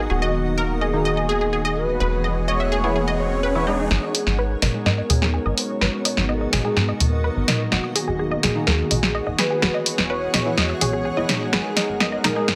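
Melodic techno with a cinematic, hypnotic pull, this passage from a longer piece layers a smooth detuned pad, a lush, bright unison pluck trailing tape echo, a tight, driving sequencer bass, a cloudy granular pad drifting in the background, a fat sub-octave analog lead with filter sweeps, edgy sync-sweep polysynth stabs and a background riser, before a punchy, dry analog drum machine with hi-hat, snare and toms arrives at 3.9 seconds to carry a build-up and drum fill under a high-pass-filtered, lightly reverberant digital ambience.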